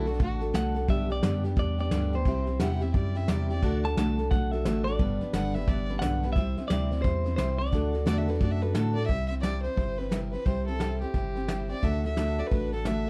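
A swung eighth-note feel at 175 BPM in 4/4 carries this nostalgic, sunny piece of honky-tonk and classic country. Soft brushes on a distant, roomy kit, a deep, round sine sub bass and an up-front, full-bodied dreadnought acoustic guitar picking through D, G and C form the accompaniment, while a bright, twangy clean electric guitar takes the melody from 0.6 s. A dark, woody fiddle with light vibrato and tape echo weaves a second line before stepping out for a solo at 9.1 s, all in a dry mix with little reverb.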